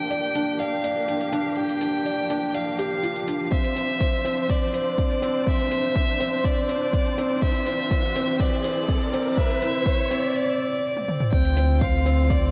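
Piano and strings electronica with a hypnotic, melancholic mood, heard in a short cut from a longer piece that builds toward a drop. A felt-muted upright piano sits up front with a soft, intimate riff, its thick felt and audible action noise treated with delay, while a single close violin carries a smooth, even melody with vibrato. Behind them a distant, lush string section holds sustained chords through a low-pass filter and sidechain pumping, and a deep house drum kit adds metallic, overdriven hi-hats and toms. An overdriven electronic kick enters at 3.5 seconds, and a background riser climbs before a brief break and drum fill. At 11.3 seconds the drop arrives with a round sine sub bass, pumping beneath the mix as the harmony returns to Dm7. A moderate hall reverb gives the whole a spacious glow.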